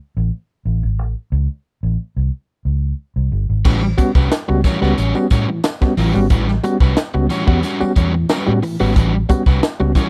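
A dark, round, foam-muted electric bass opens this playful, energetic funk excerpt on its own, sitting up front over an A chord in a small room. At 3.6 seconds the music shifts to A13 as a crisp fusion drum kit with a punchy kick and high-tuned snare arrives alongside barky, reedy electric piano stabs with light overdrive and fast tremolo, a jingly tambourine tucked in the background, and a crunchy, picked overdriven guitar joining at 3.7 seconds. The drums carry a pumping room sound, and the bass drops out at 9.9 seconds just before the others stop.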